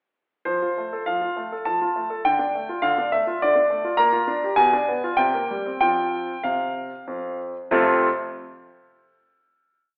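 In a straight 3/4 at 94-102 BPM, this short classical-period piano sonatina in F major moves with a graceful, cheerful poise. A baby grand piano plays alone from 0.5 s, its tone clear and intimate, with the action noise of the instrument audible and the sound placed up front. A single-line melody sits above a broken-chord bass, ranging from F2 to Bb5, as the theme passes through F, Dm, Gm7/Bb, Bdim7, C5 and F5. At 7.7 s the piece settles onto a closing F chord, and the piano stops at 8.1 s while the moderate recital-hall reverb of a church or concert hall carries on. The whole recording has a narrow, telephone-like coloring that frames the natural piano tone.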